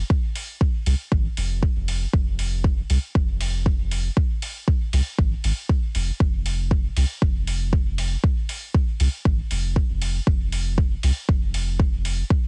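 A straight 4/4 pulse at 118 BPM drives this nocturnal, deep dub techno cut in F minor, taken from a longer piece. An electronic kick drum sits up front, its layered, produced tone lending the track weight from 0.1 s onward. Beneath it, a soft dub sub bass holds the low end between F1 and C2, a round, sustained tone with a fast attack that blends triangle and square wave colours and pumps with sidechain compression. A quieter electronic hi-hat enters at 0.4 s, adding analog, metallic ticks above the low end. The sound is dry and heavily compressed, with a radio-like flatness that keeps the whole passage close and dense until it ends at 12.5 s.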